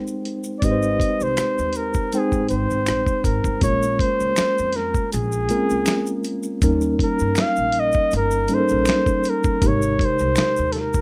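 Sensual and smooth, this neo-soul and R&B excerpt from a longer piece moves at an unhurried 80 BPM in 4/4 with a light 16th-note swing, settling in Ab major over an Abmaj9, Bbm7, Eb7 and back to Abmaj9 progression. A mellow, clean tine electric piano opens the track at 0.0 seconds, sitting up front and heard through built-in speakers. A dusty soul sampler-style drum kit soon joins, compressed and gritty with a thumpy kick, a medium-tuned snare, hi-hat, rim clicks and finger snaps, while quieter maracas, finger snaps and a close, dry group handclap add texture underneath. From 0.6 seconds a woody upright bass plays pizzicato on steel strings, and a flugelhorn takes the solo melody in a jazz style, carrying a warm tone, gentle vibrato and a smooth top. A moderate studio reverb gives the rough home-demo mix a modest sense of space.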